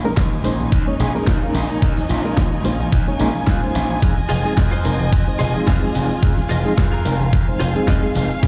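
This short excerpt from a longer piece sounds as if it were played through a big sound system in a bare stone room, which gives it a light, echoing reverb. It is a groovy, sleek nu-disco track in F minor at 109 BPM in 4/4, with a gentle 16th-note swing, and the harmony moves from Eb7sus4 to Fm7. Up front, a knocking, overdriven electronic kick sits with a gritty, punchy slap bass, while a pop drum kit adds a fat snare, soft-toned hats and shaker, joined by very quiet congas played with soft hands. A reedy electric piano with medium tremolo, sidechain pumping and slapback echo carries the accompaniment, and a dark, distant chamber string section holds bowed, expressive chords that pump along with it. A thick, detuned sawtooth unison lead with tape echo sits in the background from 1.0 to 2.9 seconds, and a faint electronic swell passes at 3.1 seconds. From 4.3 seconds a clean, compressed, direct-recorded electric guitar picks a riff with subtle chorus and slapback echo.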